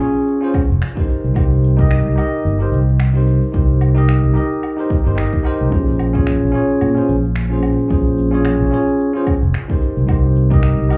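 A round, amped fretless electric bass with analog chorus sits up front in this relaxed sunset chillout excerpt at 110 BPM with a 16th-note swing in Bb dorian, alongside a bright, bell-like tine electric piano with digital delay voicing a rootless Bbm9 that moves to Cm7, a deep, layered, overdriven electronic kick drum from 0.5 seconds, and gritty electronic shaker, woodblock and finger snaps, the whole mix heard muffled as if through a wall with club reverb.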